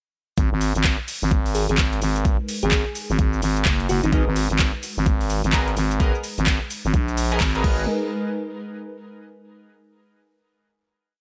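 Swaggering and bouncy, this short bass house piece runs at 128 BPM in G# minor with a 61% swing on the sixteenths, built as a single drop from 0.4 s that holds on a G#madd9 chord before a final hit at 7.9 s. A knocking, overdriven electronic kick drives a four-on-the-floor pulse under a programmed garage kit of metallic hats, shaker, claps and crash, both set in studio reverb, with the kit sitting up front. A growling, thick FM bass, overdriven and pumping against the kick, carries chopped phrases low in the mix's foreground, while a sweeping resonant sawtooth pad sustains detuned chords with chorus and sidechain pumping. From 1.5 s to 4.2 s a bell-like, sparkling FM electric piano adds short answering phrases in the background through chorus and delay. At 4.1 s a band-passed, nasal chord stab enters with sparse echoing shapes moved in parallel, treated with phaser, lush chorus and delay, and the band lands a shared accent at 7.4 s inside a digital ambience.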